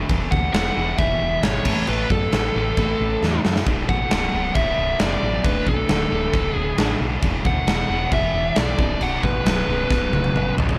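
A double-tracked, overdriven semi-hollow guitar opens this driving, menacing hard rock excerpt with a low picked riff, its hollow-body tone thrown back by a slapback echo, while a punchy, round FM bass with a fast attack and decaying notes sits beneath it from the start. A big acoustic rock kit comes in at once, up front and sounding like a large room, with a punchy kick, a medium-tuned snare, toms and bright crash cymbals. From 0.3 seconds a dark, smooth, overdriven lead guitar carries a picked melody high above the riff. The chords move from E5 and A5 to B minor, then D5, E5 and B5, in a straight 4/4 feel. Drum fills land at 3.2 seconds and again from 9.9 seconds to the close, all set in light reverb with a small room ambience.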